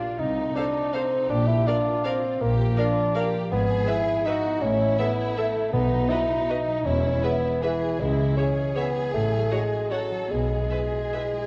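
In a rubato 3/4 at 139 to 175 BPM, this sweeping, festive classical fragment settles into E major from 3.5 s, with a mellow solo bassoon up front over ringing, thumb-plucked harp arpeggios, a lush second violin line, a rich violin melody in the background, smooth viola accompaniment, cello and double bass sections carrying the bass, and a brief, very quiet, round timpani entry at 5.7 s, set in wet scoring-stage reverb and the warbly pitch drift of worn old cassette tape.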